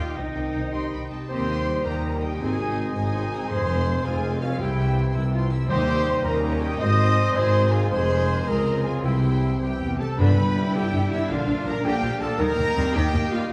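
A rich, expressive studio violin section carries the melody of this heroic, triumphant film-score cue, cut from a longer piece and set in a straight 6/8 at 108 dotted-quarter beats per minute in Eb mixolydian. Around it, a hollow concert flute, a mellow clarinet and a chamber violin section trace supporting lines in the background, while a clear oboe sounds briefly at the opening and returns for the closing stretch. Dark, distant French horns and a tight, very quiet trombone section hold sustained chords, warm trumpets add stabs, and a very quiet, lush viola section and a ringing, fingerpicked harp fill out the texture with accompaniment and arpeggios. The low end rests on a close, smooth double bass section and a focused cello section, joined by a roomy tuba from 1.3 s. Round timpani strokes land at 5.7 s and 10.2 s, the second marking the turn from a cycling Cm, Eb, Ab, Fm and C progression toward G and Bb before settling on Eb. 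A generous scoring-stage reverb gives the whole ensemble a spacious, cinematic glow.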